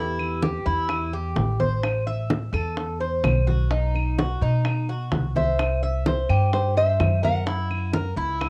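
Sultry Cuban son and guajira in a straight 4/4, this excerpt from a longer piece opens with a full-bodied, fingerpicked nylon-string guitar melody that sounds briefly before returning at 5.4 seconds, set over metallic, double-strung tres arpeggios with a cassette-tape tint, both parts bathed in plate reverb, while an up-front, woody pizzicato upright bass holds the low end and ringing low-tuned congas, soft-handed round bongos and distant claves enter at 0.2 seconds, all within the light room reverb of a homemade cassette recording.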